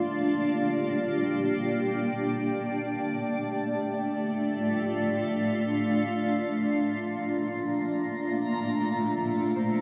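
Steeped in a wet two-second echo-chamber reverb and cassette-tape haze, this peaceful, free-time ambient fragment in Bb major rests on an up-front, cloudy granular pad of blurred, mellow sustained chords moving from Gm to Dm to Bbmaj7, joined at 7.7 seconds by a dreamy, reversed backwards swelling texture and at 8.6 seconds by a very quiet, ringing concert harp playing fingerpicked arpeggios.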